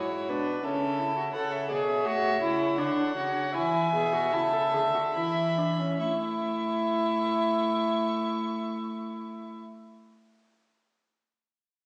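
A baroque-style fugue for string quartet opens at once with all four gut-strung, period-style players bowing together in 3/4, a rich violin with light vibrato carrying the melody over a dark, nasal second violin, an up-front viola with light vibrato, and a close, reedy cello on the bass, the stately yet lively music slowing from 0.3 to 6.0 seconds before settling on A as the strings stop at 9.6 seconds, all heard from further back in a wet recital hall through a small-speaker sound, cut from a longer piece.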